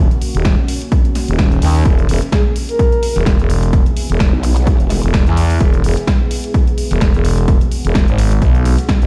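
Bass house at 128 BPM with a swung 16th feel, this bouncy, aggressive clip from a longer piece moves from E-flat minor to E major over a growling, thick FM bass sitting up front with overdrive and sidechain pumping, while a deep, moody pad with chorus, 12-bit sampler grit and pumping hangs dark in the background. A punchy, tape-warm electronic kick and a layered house kit of snare and hi-hats in small room ambience drive the groove, as a breathy, flute-like synth lead with vibrato warbles briefly from 2.3 seconds and a detuned, wobbling, saturated growl bass bursts in at 4.3 seconds. The whole mix plays back through a big system in a bare room with stone reverb.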